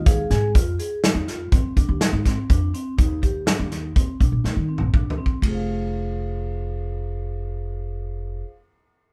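In an uneven 5/4 at 123 BPM with a straight feel, this brooding, tense progressive instrumental fragment in F dorian opens with a clean, bell-like tine electric piano fill lasting 0.5 seconds, while a woody, thumpy pizzicato upright bass on gut strings sits up front, a dry, close-miked vibraphone with medium hard mallets and its motor off rings out metallic arpeggios, and a loose indie drum kit with dark cymbals, a medium-tuned snare and a tight kick plays a fill from 4.4 seconds before stopping at 5.5 seconds, the band heard live in one room with light reverb as the chords move from Fm7 to Ebmaj7(no3) and on to Fm.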